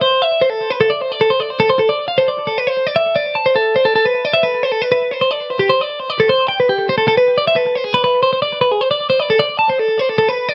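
Rock with a wistful, restless mood, this short cut from a longer piece features a solo twelve-string electric guitar, bright, twangy and clean, picked up front with compression and analog delay, moving into a new section at 3.2 seconds within a dark production touched by light reverb.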